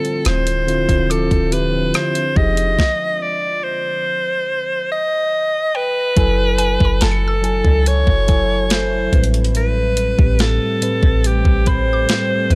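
Late-night and sensual, this slow contemporary R&B cut at 71 BPM sets a bright, forceful alto saxophone melody with vibrato and analog delay up front over a mellow tine electric piano heard through its built-in speakers and a deep, moody ambient pad with chorus, reverb and sidechain pumping, moving through Dm9, Fm9, F#m9 and Am9. A clean 12-bit drum machine with a thumpy kick, rim click and hi-hat drives the groove, a boomy sine 808 bass enters at 0.3 s, and a woody FM synth pluck with chorus and delay adds texture in the background. A stop falls from 2.8 to 6.2 s, and the whole has a dry, gritty hardware sound with digital ambience.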